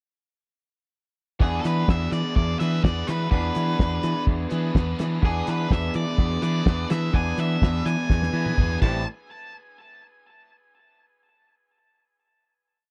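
Dry, close and 1970s in character, this short indie rock piece at 125 BPM in 4/4 has a cool, bittersweet mood, anchored by a cloth-damped, thuddy drum kit up front with a fat snare and dark cymbals playing an indie four groove, capped by a fill from 8.1 seconds. From 1.4 seconds, a growling, overdriven bass plays octave lines, a twangy guitar through a small old amp rings out chords, and a biting overdriven guitar with lush chorus adds its own riff over E7 moving to Am7. On top, an octave-fuzz lead guitar with distortion and tape echo plays hook phrases before the piece lands on a final hit at 9.1 seconds.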